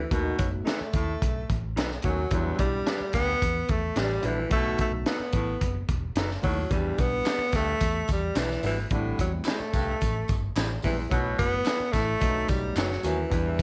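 Uptempo 1960s-style soul at 109 BPM in a straight 4/4, driving and urgent, cut from a longer piece and moving through B7, Em7, Am7 and a B7sus4 that resolves back to B7. A breathy, close-miked tenor saxophone carries the melody up front with jazz-style vibrato, subtone and a slapback echo, while a soft-attack vintage baritone saxophone plays a low riff beneath it. A crunchy breakbeat drum kit sits forward with a high-tuned snare, tight kick and hi-hat, its sound saturated and gritty with a rolled-off top, and a vintage muted picked electric bass gives a round, foam-muted low end. In the background, a barky, overdriven tine electric piano through a combo amp supplies accompaniment, and a slightly broken-up, lo-fi electric guitar through a small old amp adds picked stabs from 0.7 seconds. Tambourine, egg shaker and group handclaps, compressed and also sitting in the background, join at 6.7 seconds, all set in a light reverb.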